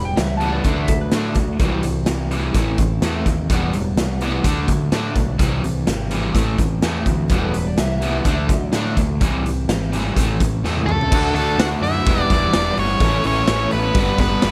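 Driving and swaggering, this classic rock passage, cut from a longer piece, rides a boomy, saturated garage drum kit set up front in a bright stone room, a growling overdriven bass, a bright overdriven garage guitar riff, and a darker hollow-body riff with harmonic tremolo sitting in the background. A very quiet, full-bodied jumbo acoustic guitar picks out accompaniment underneath, while a compressed, slightly broken-up slide guitar played with fingerpicks adds a second line in two brief appearances, all within a small room ambience. After a drum fill at 10.6 seconds, an up-front octave-fuzz lead guitar takes the melody from 10.9 seconds, joined by a lower fuzz line in the background as the chords move on from the opening Em–Dadd9–C–Am cycle.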